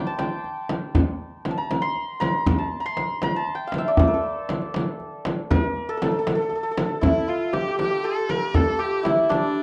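A shimmering, ringing santur is heard first, carrying a longing, hypnotic melody in dastgah shur on A at 79 BPM in a straight 6/8, tuned to A4 = 437 Hz, in this short cut from a longer Persian modal piece. A tight tombak and a deep frame drum played with hard hands sit beneath it, the drum set up front yet sounding distant in a large room, within a dry, close 1970s-style studio sound with light reverb. At 7.0 seconds a biting, bowed kamancheh joins as a focused second line full of vibrato and portamento, continuing to the end at 9.6 seconds.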